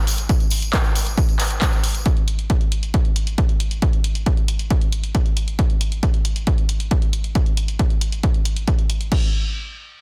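A straight 4/4 feel at 136 BPM anchors this euphoric, soaring trance excerpt, with an electronic kick drum entering at 0.3 seconds and sitting up front as the loudest part. That kick is punchy and analog in character, re-recorded in a large room that gives it a sense of space. Around it, an analog drum machine supplies crash cymbal, handclaps and hi-hat from 0.1 seconds through to the end, carrying a similar roomy quality at a lower level. A jingly, bright acoustic tambourine adds a close, dry shimmer in the background, but only until 2.0 seconds. The parts carry little reverb beyond that room character, and the whole is a dense, heavily limited modern master spanning this single section cut from a longer piece.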